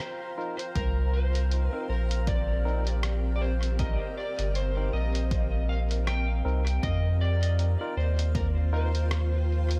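A round, up-front sub bass anchors this deep, spacious ambient dub excerpt from 0.8 s, joined by a punchy overdriven electronic kick, while a dark, slightly broken-up electric slide guitar carries the melody through dub echo over a blurred, detuned granular cloud pad, muffled pitched-down lo-fi hi-hat and rim clicks with a gentle swing, and bright, barky tine electric piano stabs entering at 0.4 s, all in a dry, echo-heavy mix.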